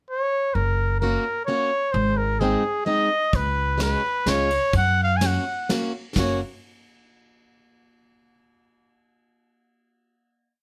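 Festive and bouncy, this short, complete alpine folk piece is played by a small alpine dance band in a straight 3/4. A clear trumpet opens with a pickup at the very start and carries the melody up front in a classical style, building its song-like phrases from short motifs. An upright bass follows with woody pizzicato on steel strings, marking root and fifth on the main beats. A picked, plugged-in acoustic guitar with a boxy, swing-style tone adds off-beat triad chords, and a soft brush drum kit with a tight kick, medium-tuned snare, hi-hat and ride joins at 3.3 seconds, sounding like it was recorded in a small room. Light reverb surrounds the band as the harmony moves from F# through G# and a suspended C# chord back home, closing on a final chord from 6.2 seconds.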